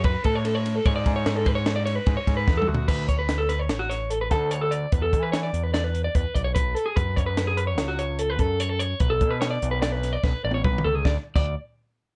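Slightly broken-up, lo-fi electric guitar arpeggios, a growling overdriven picked bass and a compact cocktail drum kit with a high-tuned snare and punchy kick all start together up front in this playful, intricate math rock and midwest emo excerpt in 5/4, moving from F#m through Dmaj7 and Bm9 in a dark, lightly reverberant mix, with drum fills at 2.5 and 10.2 seconds before the harmony falls away at 11.0 seconds.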